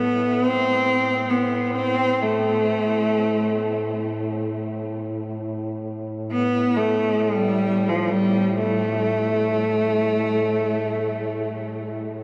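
Caucasian folk in the manner of a lament, this excerpt moves in free time with a mournful, longing mood. A bright, focused cello carries the melody, bowed by one player with vibrato, sitting up front yet sounding distant through a diffuse ambient delay, and it falls silent at 11.9 seconds. Beneath it, a dark duduk holds a low drone on A, its soft attack, scooped notes and smooth top lending a folk-style vibrato until 12.2 seconds. The whole mix is dreamy and soaked in a huge ambient reverb with a long tail, giving the lament a vast, hazy space.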